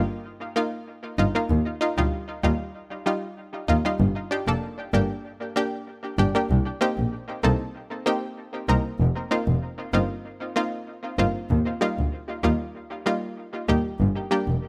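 An echo-heavy mix with light studio reverb gives this short dancehall excerpt a roomy, hypnotic haze and a sultry mood over a straight four-four pulse. An analog pluck opens at 0.0 s, up front and bright, its warm, round, detuned sawtooth tone carrying chorus and trailed by analog delay, each note snapping in with a fast attack and short decay as it plays accompaniment. At 1.2 s a bowed double bass joins, also up front, with a dark, expressive voice, vibrato, sliding portamento and a smooth top, played by a single musician in the low register. The harmony cycles through F7sus4, Ebadd9 and Gm, then a second section from 6.5 s opens on Cm7 before returning to the same progression. The two parts hold this mesmerizing groove until the clip ends.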